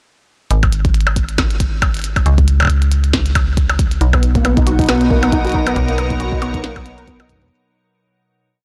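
A blown-out, overdriven, dry recording carries this playful, glitchy IDM piece at 137 BPM in B major with a swung 16th feel: from 0.5 seconds a metallic FM bass holds sustained roots, a deep electronic kick joins at 0.6 seconds with a broken pattern, and a glitched drum kit of clicky hats, woodblock blips and a tiny soft-clipped snare with tape echo keeps the beat ever-changing, until a lo-fi, warbling sawtooth pluck enters up front at 4.0 seconds with a 7-step arpeggio drifting against the bar over a Bmaj7 chord, joined by an icy, crystalline glass pad of slowly shifting chords before the piece fades out from 5.2 seconds.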